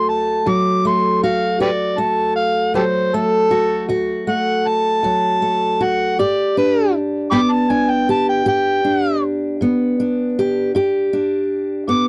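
Acoustic country blues with a swaggering, rollicking mood, this short cut from a longer piece moves at 53 BPM in a straight 12/8 feel in D major. An amplified, overdriven harmonica carries the melody up front, its gritty tone marked by tongue slaps and scooped notes in a jazz-inflected solo style. Beneath it, a fingerpicked steel-string acoustic guitar plays accompaniment, also up front, with a woody sound from old strings. Both parts play throughout the 12.1 seconds, as the harmony sits on D before shifting to G at 6.2 seconds. The recording has the dry, close character of a 1970s studio session, touched with light reverb.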